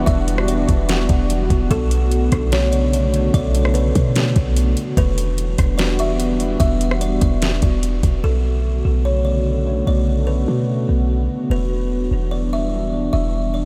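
A buzzing, woody kalimba with tape echo carries the melody over a moody, detuned sawtooth pad with chorus and sidechain pumping and a boomy, clean 808-style sine bass in this hazy, ethereal cloud-rap hip hop excerpt, where a smooth electronic R&B kit of soft kick, deep snare, rim click and metallic hats holds a half-time feel until 8.1 s, leaving the dreamy, reverb-soaked mix to drift between Em9 and Bm9 chords.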